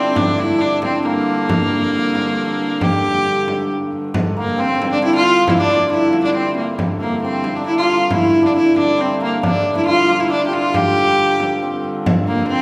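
Set in the lingering reverb of a church or concert hall, this mysterious, driving medieval dance in 3/4, cut from a longer piece, puts a clear, reedy viola da gamba up front, its fretted gut-string tone carrying the melody with light vibrato and an airy bow. A bright, shimmering hammered dulcimer plays a second line in the same register, while a dark, woody hurdy-gurdy holds a low wheel-bowed drone beneath. A frame drum struck with hard hands enters at 0.2 s, and the music moves into a new section at 4.1 s.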